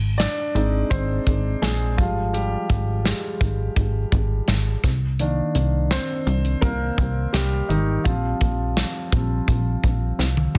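A plucky, wave-folded analog bass opens this hopeful, uplifting piano-driven pop excerpt at 84 BPM, joined at 0.2 s by an open, long-sustaining concert grand carrying the lead over Ab, Fmadd9/Ab, Cm7 and Fsus24 chords and by a punchy, mid-forward acoustic drum kit that closes with a fill at 10.2 s, all set in a small room within a dense, heavily limited modern master.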